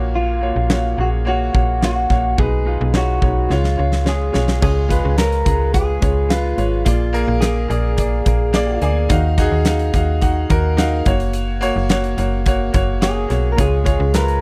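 A slightly broken-up electric guitar with a lush chorus carries a warm, hopeful melody over a bright, woody upright piano, a snappy FM bass with a metallic attack and a huge arena drum kit with a fat snare and punchy kick, entering at 0.7 seconds, in this dry, close 1970s-style piano-driven pop excerpt in F# major at 107 BPM, where the guitar drops out at 8.8 seconds during a piano fill and returns at 13.0 seconds.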